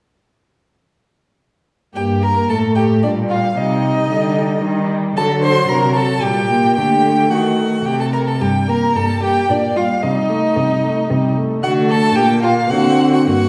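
Heard from further back in a reverberant recital hall, this stormy, restless classical-period movement for string quartet in 3/4 with a rubato feel places an expressive first violin melody, soft in attack and sung with vibrato and portamento, up front over a smooth, even second violin line, a warm viola accompaniment, and a rich cello bass that also sits forward and slides with portamento, the second violin and viola entering just ahead of the melody and bass at about 2 seconds.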